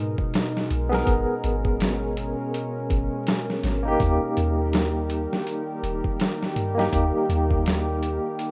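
Cinematic and melancholic, this trip hop excerpt with a gentle swing opens on a warbling, detuned tape-like pad with chorus and 12-bit sampler grit beside a deep, round 808-style bass; a gritty, overdriven soul sampler-style drum kit with a thumpy kick enters at 0.2 seconds, and a barky, up-front tine electric piano with tremolo and tape echo joins at 0.9 seconds as the chords move from G#madd9 to D#, in a rough home-demo mix dusted with vinyl crackle.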